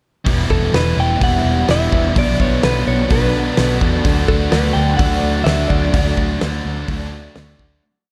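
A short, dreamy slice of shoegaze and dream pop rock moves at a steady, straight pulse, passing through a single blissful verse from Em7 to Bm7 and onto D before fading out from 5.9 seconds. A biting overdriven guitar opens at 0.2 seconds with strummed chords and whammy-bar dips, its riff haloed by reverse reverb, while a thick fuzz guitar sits further back playing its own strummed, whammy-dipped riff with a subtle chorus shimmer. Underneath, a vintage muted fingered bass drives round, dark eighth notes, and a loose indie drum kit supplies a big rock groove with a fat snare and punchy kick. A warbly, lo-fi, nostalgic pad drifts in slowly behind everything from 1.1 seconds, its sawtooth and triangle tones softened by chorus and long release. Over the top, a bright, twangy, direct-recorded clean guitar picks a free, compressed melody trailed by analog delay, all framed in a dark, warm production with light small-room ambience.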